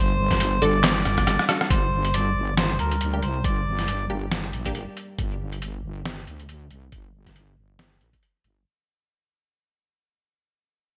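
This deep dubstep excerpt has a meditative, cavernous mood and a swung, half-time feel. A reedy, breathy melodica carries the melody up front with dub echo until 4.1 seconds, while a heavy, saturated wobble bass with chorus anchors the low end and a moody analog pad holds sustained chords in the background. An electronic kick with a knocking, layered tone enters at 0.3 seconds alongside a gritty, pitched-down sampler-style kit of snare, handclaps, hi-hat, rim click and shaker, treated with gated reverb. A muted, filtered chord stab sounds through phaser and dub echo, and the opening drop closes with a drum fill before the passage fades out from 1.7 seconds. A lush hall reverb and bright 1980s-style digital production give the sound a spacious sheen.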